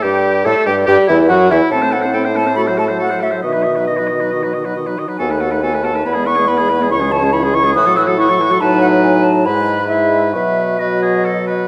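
A pure, hollow silver concert flute, tongued and played with vibrato, carries the melody high above a distant oboe second line with light vibrato in this stormy, restless classical-period wind quintet movement at a quick 140 BPM in 4/4, while a mellow clarinet and a soft-attacked, vintage-toned French horn fill the accompaniment and an up-front bassoon anchors the bass, all five playing throughout this 11.7-second passage that moves from Gsus2 through E and C#m to settle on B, set in a wet recital hall with a dark, warm production and tuned to A4 = 437 Hz.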